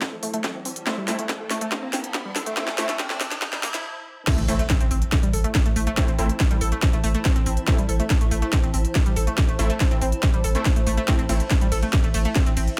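A punchy, tape-warm electronic kick leads this driving, relentless peak-time techno excerpt at 141 BPM in A minor, joined by a layered kit with a cracking snare, smooth hats, crash and ride cymbals, both re-recorded in a small room. Through the build-up, a drum fill and a background riser lead into a brief break. Meanwhile a bright, detuned analog pluck riff with chorus and tape echo, aggressive rave stabs with delay, and a cloudy granular pad all pump with sidechain. An impact marks the drop at 4.3 seconds, and just after it a deep, saturated sub bass with overdrive enters and fills the low end for the rest of the cut.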